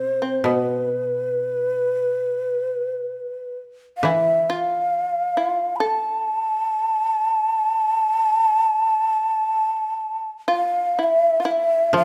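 Japanese traditional chamber music, austere and meditative, drifts at a rubato 59-68 BPM in 4/4, set in A hirajoshi with tuning at A4 = 441 Hz. The end-blown bamboo shakuhachi carries the melody up front, its breathy, hollow tone shaded with vibrato and the chiff of tongued attacks. Beneath it, the fretless shamisen adds a plectrum-plucked second line, bright and percussive with a buzzing edge. The koto, played with fingerpicks, gives a woody, dry accompaniment, also placed close to the listener. All three play together from 0.0 to 12.0 seconds in a moderate recital hall reverb, and this short passage is cut from a longer piece.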